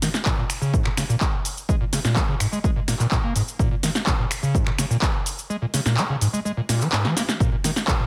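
An overdriven acid bass drives this raw, trippy acid house excerpt at 126 BPM in Bb minor, its squelchy, gritty square-wave riff running from Ab2 to Bb3 up front with a resonant filter sweep, distortion, subtle chorus, digital delay and sidechain pumping. A punchy analog drum machine sets out snaps, handclaps, hi-hat, shaker and snare, with a short room on the snare, clap and hats. A tape-warm electronic kick enters at 0.3 seconds and drops out from 5.5 to 7.4 seconds, while a drum fill runs from 6.9 to 7.4 seconds. Light reverb gives the mix a touch of air.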